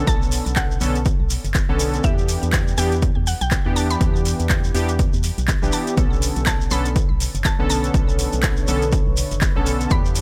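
Deep house with a warm, swung feel, driven by an up-front, punchy overdriven kick, metallic overdriven hi-hats and handclaps, and a grainy, close shekere, under a hollow, organ-like FM bass and vintage, warbling analog key stabs that pump with the sidechain, while a woody mallet-like pluck carries the chorused, delayed melody and a moody, evolving pad slips in at 7.2 s in the background over Bm9 and Em7 chords.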